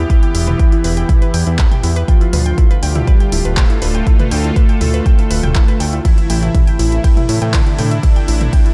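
A dry, close-sounding mix with little reverb, where a deep, tape-warm electronic kick and a fat, thick sawtooth bass sit up front. This is a dark, melancholic piece of melodic techno at 121 BPM in a straight 4/4, cut from a longer track and moving through Em, Dm and Am. Behind the kick, a punchy analog drum machine adds overdriven handclaps, hi-hat, ride cymbal and toms, while the detuned bass carries a filter sweep across its low register. A soft, smooth supersaw holds the main melody in the background with tape echo, shadowed by an airy, dreamy sine-and-triangle lead with vibrato, portamento and delay. A bright, evolving sawtooth pad swells slowly through sustained chords, and a warbly, dusty, nasal pluck spins lo-fi arpeggios higher up. Sidechain pumping breathes through the melodic parts and the bass, giving the whole passage a steady, pulsing sway.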